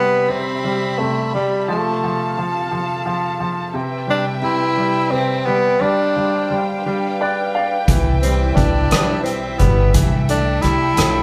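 A clear tenor saxophone with light vibrato and a smooth top carries the melody up front in this swaying, romantic pop ballad in 6/8 at 58 BPM, set in C major and cut from a longer piece. A bright upright piano with short sustain accompanies it and plays a fill at 6.8 seconds, while a muted studio string section, bowed con sordino, holds veiled, dark chords as the harmony moves from Cmaj7 through F and G7sus4 to G7. At 7.9 seconds a woody, growly pizzicato upright bass and a soft-mallet drum kit with a boomy kick, hi-hat and rim click join, and the band plays together in one room with wet reverb.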